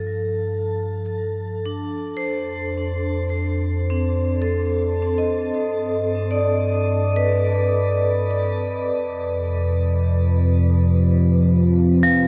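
Ambient and serene at a slow 53 BPM in 3/4, this excerpt fades in on ringing, bright hard-mallet vibraphone arpeggios with slow motor vibrato and tape echo over a round, deep sine sub bass, before a mellow, evolving sawtooth-and-pulse analog drone with chorus enters at 9.7 seconds, all bathed in a moderate shimmer reverb and the soft grain of cassette tape.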